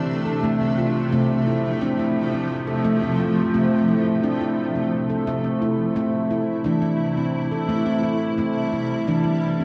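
A cassette-tape softness hangs over this short meditative world piece, set in a deep church reverb that lets each tone linger. A stainless-steel handpan sits up front, close and ringing, picking out arpeggios with sharp finger strokes across a middle register for the whole 9.6 seconds. Beneath it, a granular cloud pad holds sustained chords, its detuned sine voices blurred and slowly evolving, with a slow attack, long release and its own reverb. The harmony moves from F at 0.4 seconds to A minor at 5.3 seconds, in 7/8 at 173 BPM in eighths with a straight feel. The mood stays gentle and contemplative throughout this fragment of a longer work.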